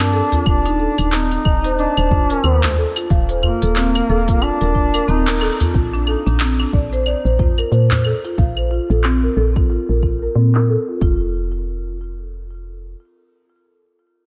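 A distant, roomy duduk sings a vibrato-laden, scooped folk-style solo through tape echo until 5.6 s in this earthy, swung organic downtempo cut at 91 BPM, over up-front rosewood marimba arpeggios, a dark, round, woody FM bass with sidechain pumping, a deep electronic kick, a small close udu in the background, and a kit of claves, handclaps, smooth hi-hats and shaker, with filter sweeps on the drums and marimba from 5.7 s and the bass carrying on alone until 13.0 s.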